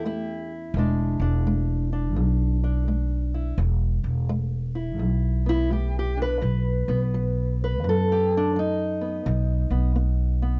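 A swung 4/4 at 85 BPM carries this laid-back, soulful acoustic country blues in E mixolydian, where a boxy, old-stringed, fingerpicked ladder-braced acoustic guitar plays the melody over a pizzicato upright bass with a dark, woody tone, both up front in a dry, close 1970s-style studio sound as the chords move from A7 to E7 and then to B7 at 6.4 seconds in this short cut from a longer piece.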